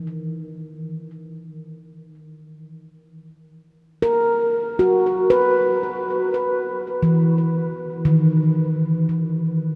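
Serene and luminous, this ambient excerpt drifts in free time with a solo handpan carrying the whole 9.8 seconds, its ringing stainless-steel tones struck with soft fingertips and set up front. The mellow, meditative notes range from D#3 to B4, touched with delay and bathed in a huge, wet reverb that hangs for 7.6 seconds. The harmony rests on F#add11 before shifting to E5 at 6.1 seconds.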